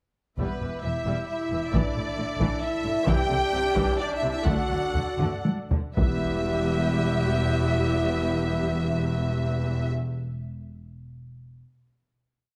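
A cinematic, epic orchestral film score in 3/4 with a dramatic mood, where lush bowed violin sections carry the tune doubled at the octave, one sliding expressively with portamento in the background, over a driving viola ostinato and dark, woody cellos with double basses doubling the bass line, while a vintage-toned French horn section and distant, roomy woodwinds hold sustained chords and an up-front taiko ensemble beats a big ostinato with hard sticks, the music slowing from 2.4 s into a drum fill that lands on a final held chord at 6.0 s, with the drums stopping at 7.0 s.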